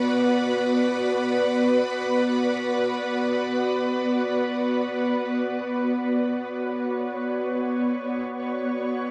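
An ethereal, airy pad of detuned sawtooth and triangle voices in unison plays alone, up front, across this reflective ambient fragment cut from a longer piece, drifting in free time in B minor on a single Bm chord between B3 and D5, its slow attack and long release softened by ensemble chorus, built-in reverb and delay, and set in a huge, spacious 7.5-second reverb under worn, warbling cassette tape pitch drift, with a new section beginning at 5.4 s before it ends at 9.1 s.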